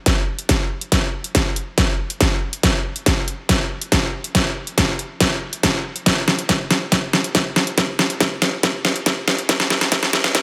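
Lightly reverberant and high-pass filtered, this excerpt of heavy wobble dubstep in a half-time 4/4 feel is a menacing build-up carried by a drum fill and a filter sweep from start to finish. An up-front, layered dubstep kit of hi-hat and deep snare plays from 0.1 s to 10.4 s, overdriven and re-recorded in a small room. Beneath it, a punchy, overdriven electronic kick with the same small-room character runs through the same stretch.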